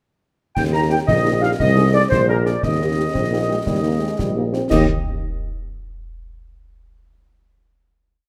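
Festive and proud, this brief military-style march for wind band in Eb major moves at 116 BPM in a straight 6/8, with a dark trumpet section carrying the melody in the background while a distant, roomy woodwind section doubles the tune in unison, a mellow French horn section adds after-beat and sustained chords, a soft-attack euphonium answers at phrase ends from 3.1 s, an up-front tuba holds the bass on the beats, and concert snare, bass drum and dusky clash cymbals drive the march before a final chord rings out at 4.7 s in a moderate recital hall.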